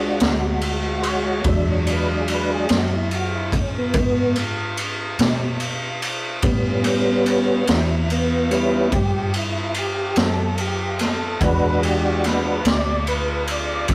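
A tonewheel organ opens this gritty, laid-back slow blues in E mixolydian, taking the solo with clear, clean sustained chords colored by chorus vibrato and a slow rotary speaker, alongside a dark, round, foam-muted fingered electric bass. A raw garage drum kit joins at 0.2 seconds, up front with a punchy kick, a high-tuned snare and ride cymbal, its saturated sound carrying a rolled-off top. At 48 BPM in a straight 12/8, the harmony moves from E9 to A9 at 6.4 seconds and back to E9 at 11.4 seconds, all captured in a rough rehearsal-room recording with wet small-room ambience, warm saturation and a faint mains hum.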